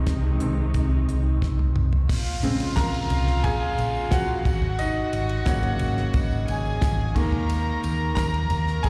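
A live gig sound carried through the venue's PA, with light recital-hall reverb, frames this short, driving and bittersweet piano-driven pop fragment in Bb minor at 89 BPM in a straight 4/4. A clear concert grand piano with deep bass leads throughout, bathed in plate reverb and slapback echo, and for the first 2.1 seconds a studio string section adds sustained chords with vibrato and portamento over an Ab/C chord. A round, punchy hollow-body electric bass sits up front beside a damped 70s drum kit with a fat snare, tight kick and dark cymbals, and a drum fill from 1.4 to 2.1 seconds leads into the next section. From 2.1 seconds a floating, sul tasto violin section takes up a second line, sharing the piano's plate reverb and slapback echo, while a jingly tambourine rings distantly in the background and an electronic downlifter sinks beneath until 7.5 seconds. The harmony moves through Bbm7, Ab7sus4 and Ebsus4.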